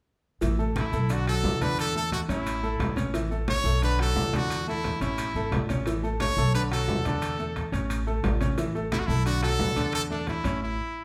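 A sunny, danceable salsa passage, cut from a longer piece, opens at 0.4 s with the rhythm section already in motion. A bright, polished grand piano with short sustain plays accompaniment in its middle register, while a woody, thumpy upright bass plucks a dark pizzicato line on steel strings. Behind them sit warm, low-tuned congas with a thick skin, grainy, mellow maracas, and ringing metal-shell timbales with a vintage, band-limited tone. At 0.8 s a brilliant, punchy trumpet enters up front as the solo voice, forceful and pop-styled with vibrato, over harmony that cycles from A through Bm7 and E7sus4 back to A. The group sounds like a band playing live in one room, wrapped in a wet, large studio reverb, and at 10.6 s it breaks off in a stop.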